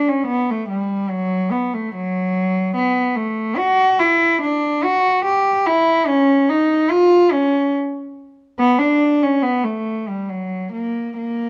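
Introspective and flowing, this excerpt of a baroque-style suite movement for unaccompanied cello moves in a rubato 3/4 around 72 BPM, with a single bowed cello up front whose rich, reedy gut-string tone and period style ring through a moderate stone-room reverb, all heard through the warbly pitch drift of worn old cassette tape.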